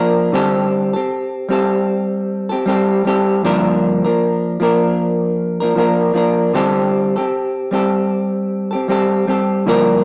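A dark, clean semi-hollow electric guitar sits up front and carries a solo through the full 10 seconds of this excerpt, fingered with a vibrato effect coloring its hollow-body tone. The indie pop piece moves at a slow 77 BPM in 4/4 with a light swing on the sixteenths, drifting from D7sus4 to Gm7 and back to D7sus4 in a lonely, hazy mood. A wet small-room reverb and a small-speaker sound give it the feel of a band playing live in one room.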